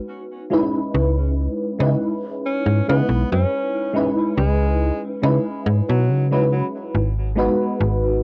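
A breathy alto saxophone drifts in at 2.5 s with light vibrato and scooped notes, its smooth top softened by cassette tape and tape echo, in this woozy, hazy vaporwave excerpt with a gentle sixteenth-note swing. Underneath, a round, dark FM electric piano opens the clip, colored by phaser, ensemble chorus, analog delay and tape wear. A snappy FM bass with a metallic attack joins at 0.9 s and sits up front as the chords move from G#m7 to a long C#m9 and back, all in a lightly reverberant home-cassette sound.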